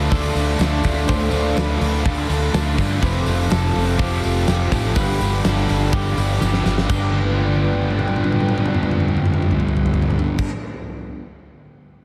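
Shoegaze and dream pop rock with a blissful, hazy mood, this piece pairs a big, dark rock drum kit with a fat snare and punchy kick up front, a round, foam-muted vintage bass, and a jingly tambourine tucked behind. A wall of guitars forms the core: a biting overdriven guitar with reverse reverb, a bright, double-tracked distorted guitar, and a thick fuzz guitar with analog chorus all play riffs. Above them, a clean twelve-string electric guitar arpeggiates through subtle chorus and tape echo over a hollow, flute-like pad of sustained chords, while a drum fill from 6.4 seconds carries the music into a new section at 6.9 seconds, all inside a small room and a dense, heavily limited master.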